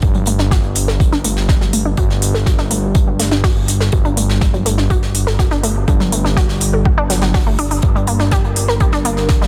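A dense, heavily limited modern master with small room ambience frames this melancholic, cinematic melodic techno excerpt at 123 BPM in 4/4, moving from a rootless D/G to G minor at 7.8 seconds. A fat, detuned sawtooth bass sits up front with sidechain pumping beneath a deep, layered electronic kick and smooth electronic hi-hats, while a soft acoustic brush kit adds a medium-tuned snare and hats. A bright, wave-folded unison pluck carries delayed, pumping arpeggios under a filter sweep, and a moody, chorused analog pad with a slow attack enters in the background at 8.3 seconds.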